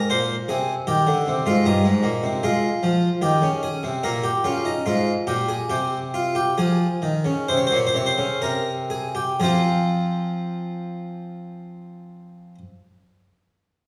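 Bathed in a wet recital-hall reverb and heard from further back with a small room's ambience, this solemn, contemplative baroque-style two-part invention in F minor, cut from a longer piece, features a solo French-style harpsichord, plucked, brilliant and up front with octave strings, moving in a straight 4/4 at 60-78 BPM and slowing from 0.9 to 9.4 seconds as the harmony passes through C minor, A-flat, B-flat minor and F minor over C before arriving back on F minor at 9.4 seconds.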